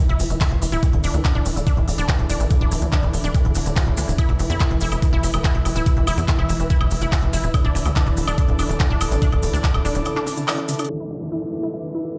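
A knocking, up-front electronic kick drives this hypnotic psychedelic trance passage, cut from a longer piece, with a tight, nasal, saturated sequencer bass, a lush detuned unison pluck riff with digital delay, a pulsing gated chord texture, an airy breathy pad, a crisp-hatted drum kit of handclaps, hi-hat and woodblock, and grainy maracas, before a break at 10.1 seconds gives way at 10.9 seconds to filter sweeps and an electronic downlifter.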